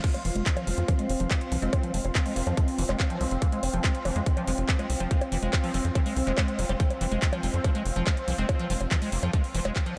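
A dreamy, reverb-soaked mix opens this driving, intense psychedelic trance excerpt in F minor at 142 BPM, where a tight, up-front electronic kick and a punchy, nasal sequencer bass drive the straight 4/4 beneath a big-room dance kit of bongos, crash, handclaps and metallic hi-hats. A squelchy liquid acid bass riff with chorus and diffuse delay pumps against the kick alongside a bubbling stepped-filter texture holding sustained chords and a cloudy granular pad drifting in the background. A very quiet, juicy resonant blip pluck adds a second line from 1.6 to 5.2 seconds and again from 8.4 seconds.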